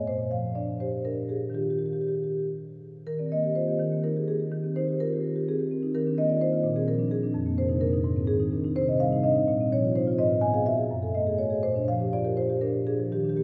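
This contemporary classical piece for solo marimba has a playful, warm mood and moves in 6/8 with a free, rubato feel. The marimba, struck with soft mallets, carries the whole passage from the start to 13.4 seconds, ranging from F2 up to Ab5 with a woody, mellow, round tone from its rosewood bars. The harmony drifts through colorful chords such as Ebmaj9, Bb7sus4/Eb and Cmadd9, then turns darker with Abm and Gbmadd9 before settling back on Bb6 at 11.6 seconds. A phrase opens the passage and is restated from 3.1 seconds, unfolding at greater length the second time. The instrument sits in a lush church reverb with a long tail and is heard from further back in the room, giving the clip, which is cut from a longer piece, a spacious, glowing resonance.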